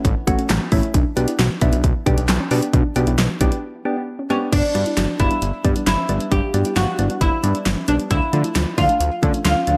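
Synth-pop at 134 BPM with an upbeat yet wistful mood, this cut from a longer piece sets a punchy, up-front pop drum kit with handclaps, crash and gated reverb against a fat, saturated sawtooth analog bass, mellow chorused electric-piano-like synth keys and a dark, chorused pluck arpeggiating in the background, while a woody, plectrum-plucked oud with digital delay carries the melody from 4.3 seconds over chords moving from Aadd9 and G/B to G6 and Dm, all in a bright 1980s-style digital production with a moderate plate reverb.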